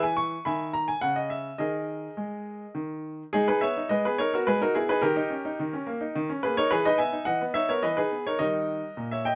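In a steady, straight triple metre, this brief excerpt from a classical-period piano sonatina carries a serious, restless mood. A single baby grand piano plays throughout, its tone clear and natural, placed up front and intimate enough that the action noise of the instrument is audible. The opening bars move from E through a pause in the harmony to a suspended D#sus4, leaving the phrase unsettled before a new section begins at 3.3 seconds. From there the harmony settles onto G# minor, then passes through D#7 and Emaj7 before arriving on D# near the close. The piano spans a range from A#2 up to C#6, and a light reverb gives the sound a modest sense of space.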